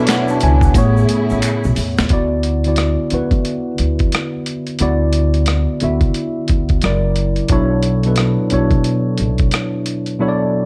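A swung 16th-note groove at 89 BPM in 4/4 drives this soulful, sultry neo-soul excerpt, with a gritty, pitched-down boom bap drum kit up front, its thumpy kick, high-tuned snare, rim click and hi-hat sounding through a drum fill from 0.8 to 2.1 seconds, and a woody, growly pizzicato upright bass joining at 0.4 seconds. A worn, slightly out-of-tune tine electric piano with analog chorus carries the chords, from Dmaj9/B and Amaj7 through D6, F#7b13 and Bm11. Over the opening 2.1 seconds, a distant, lush bowed string section with vibrato and portamento and faint finger snaps and egg shaker fill out the dark, lightly reverberant production.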